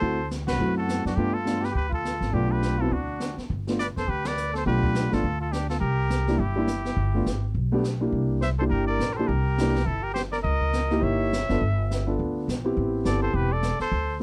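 A brisk swing at 207 BPM in 4/4 drives this relaxed, sophisticated small-group jazz cut from a longer piece, set in G mixolydian with a slightly low tuning. A trumpet with a straight mute carries the melody in a nasal, bright tone with vibrato and scooped notes, while a second, mellow trumpet sits further back in the room on a second line, also scooping into notes with light vibrato. Up front, a concert grand piano with audible action noise and long sustain comps through changes that move from D7 to G7 and on through C7, C#dim7 and Am7. The pizzicato upright bass is woody and thumpy with steel strings, and a distant, roomy brush kit with dark cymbals, a high-tuned snare and a punchy kick keeps time on brushed snare, hi-hat, ride and kick. The whole band hits accents at 0.4 and 4.2 seconds, and the dry sound carries little reverb.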